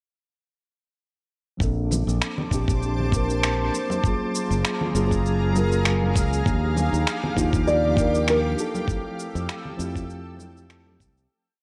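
A mellow tine electric piano with a filter sweep, a bright, punchy fingered bass, a gritty overdriven kick and a light shaker-and-snap beat open this smooth, relaxed sunset chillout piece at 1.6 s, swinging gently at 99 BPM in Bb major through maj9 chords, soon joined by a shimmering, ethereal pad and very quiet vintage congas, with a thumb-plucked nylon-string guitar motif entering at 7.7 s as a lush hall reverb and worn, warbling cassette-tape pitch drift colour the sound before the fade-out from 8.1 s.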